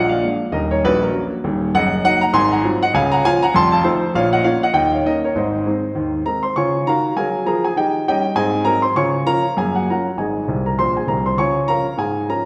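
Stride jazz at a brisk 199 BPM in Db major, this playful, exuberant excerpt features a woody, up-front upright piano alone, swinging through a run of changes in a wet recital hall reverb with a 1.7-second tail, with the piano dropping in a fill around 10.5 seconds before settling on Db at 11.4 seconds.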